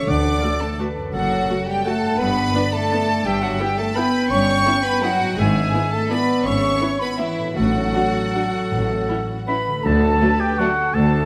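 Festive and elegant, this orchestral ballroom waltz in 3/4 moves with a rubato feel through a brief passage cut from a longer piece. Violins carry the melody with a rich, lightly vibrato tone, while a second violin line, a hollow, airy flute group and a distant, roomy clarinet add supporting lines alongside a mellow, tight French horn section holding sustained chords. Underneath, a ringing, thumb-plucked concert harp plays arpeggios in the background, violas fill in the accompaniment, and lush cellos join a clear, focused double bass section on the bass. Very quiet timpani strike at the opening and return from 7.6 to 10.4 seconds. Near the close, a smooth-topped solo oboe enters at 9.5 seconds and a background tuba reinforces the bass from 9.8 seconds as a new section begins, all set in a moderate scoring-stage reverb.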